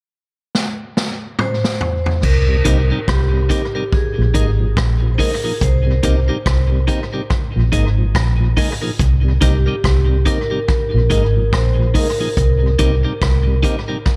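A vintage drum kit opens this roots reggae excerpt with a fill at 0.5 seconds, its punchy kick, medium-tuned snare, rim click, toms, hi-hat and dark crash cymbal sitting up front with a rolled-off top and a trail of tape echo. A vibraphone struck with hard mallets soon joins on the melody, its metallic, ringing tone kept still with the motor off and also bathed in tape echo. From 2.2 seconds, a foam-muted fingered electric bass anchors the low end with a round, amped sound. A mellow tonewheel organ with chorus vibrato and a slow rotary speaker follows in the background moments later, and a clean, picked, compressed electric guitar enters just after to add its own echoed accompaniment. The harmony rocks between Cm7 and Bb7sus4 in C minor at a relaxed 71 BPM in 4/4, with a gentle swing on the sixteenths. The mood is laid-back yet serious, set in a small room ambience with an echo-heavy mix.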